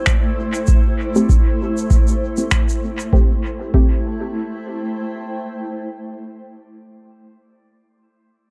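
An echo-heavy, hazy mix opens this meditative ambient dub fragment in a swung 4/4, where a blurred, granular cloud pad holds detuned, slow-blooming chords in its own reverb. A muted, deep sawtooth chord stab with chorus and dub echo carries a filter sweep through the first 3.1 seconds and lingers until 7.0 seconds. Up front sits a tape-warm electronic kick, while distant, roomy finger snaps and shaker trail dub echo and drop out at 3.1 seconds, a little before the kick.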